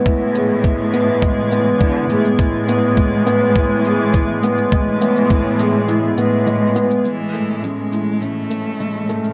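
Tender and hopeful, this excerpt of piano and strings electronica moves at 103 BPM in A major. A soft, felt-muted upright piano riff sits up front, its action noise audible and its notes trailing tape echo, over a cloudy, blurred granular pad holding sustained chords, while a lush bowed cello section carries the bass with sidechain pumping. A muffled, thumpy, pitched-down kick plays until 5.4 s and an electronic shaker continues throughout; at 7.1 s the harmony moves from E/A to Amaj7 and a single dark cello enters up front with an expressive melody full of vibrato and portamento, set in a moderate echo chamber reverb.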